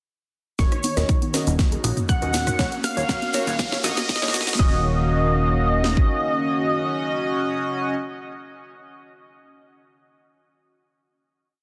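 A driving, expansive progressive house piece built around a single Ebm7 chord, opening with a build from 0.6 to 4.6 seconds where filter sweeps move through the pluck, polysynth and pad, a riser enters at 1.8 seconds, and the drums play a fill. An up-front house kit with a punchy four-on-the-floor kick and cracking snare carries the groove, joined by programmed hats, rim clicks and backbeat, a grainy hand-played shaker in sixteenths, and a dry tribal loop of electronic congas and toms in the background. A plucky analog bass with a funky, ring-modulated edge plays a dotted rhythm until 6.1 seconds. Above it, a smooth, expressive sawtooth lead with vibrato repeats a riff melody, shadowed an octave higher by a very quiet soft pluck. A dark round pluck repeats a sixteenth-note riff over a pedal note, a glossy, retro polysynth with phaser punctuates in dotted-rhythm chord stabs, and a detuned pad with tremolo sustains bright chords. 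From 4.6 seconds the piece settles into a final chord, with several parts pulsing under sidechain pumping in a dense, heavily limited mix with light reverb.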